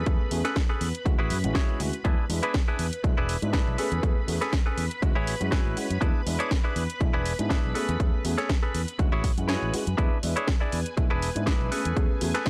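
Joyful and funky, this excerpt of filtered disco house moves at 121 BPM in E mixolydian, with a twangy, picked clean electric guitar riff, a lush string machine holding chorused chords, and a dark, mellow grand piano through a phaser, all breathing with sidechain pumping alongside a fingered electric bass. An up-front, punchy overdriven kick and a house kit with cracking snare and hi-hats drive the groove, the guitar adds fills around 5.3 and 9.2 seconds, and the kick drops out briefly at 9.5 seconds. Chords cycle through Amaj9/E, Dmaj9#11 and E7, and the whole mix carries a dry, gritty hardware character.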